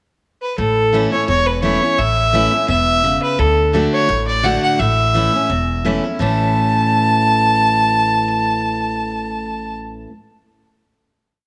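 Driving and joyful, this short bluegrass piece in A major moves at a brisk 171 BPM with a light swing, opening on a brief fiddle pickup before the guitar and upright bass join at 0.6 seconds and the tune settles on a final chord from 6.2 seconds. The clear, focused fiddle leads up front with a smooth top and light vibrato, spinning a motif-based melody in neat period phrases, while the full-bodied, fresh-stringed dreadnought guitar, also up front, alternates bass notes and strums with bass runs and a touch of finger squeak. Beneath them the woody, thumpy gut-string bass plucks a two-beat root-and-fifth pattern, all set in a moderate echo chamber reverb with small room ambience.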